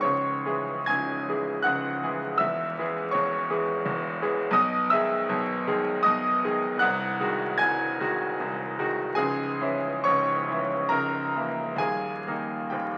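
Classical romantic nocturne for solo piano in 3/4, its melancholic, wistful line moving with a flexible rubato across this 13-second excerpt cut from a longer piece. A brilliant concert grand sits up front with a bright, present tone and deep bass, framed by moderate large studio reverb and the crackle of a very old 78 rpm record. The harmony drifts through C#m, G#7/B# and A#dim/C# before landing on D# at 11.8 seconds.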